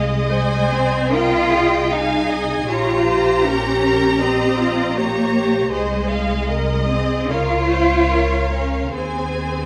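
A brief cut from a serene, slow romantic movement for string orchestra in Ab major, moving with rubato at around 71-80 BPM, opens with all five sections playing together: two distant violin sections bow a smooth vibrato melody and a lush, expressive second line above a smooth viola accompaniment, a focused cello bass and a warm double bass with light vibrato, all bathed in the generous reverb of a scoring stage through harmony that settles on Ab/Eb at 9.0 seconds.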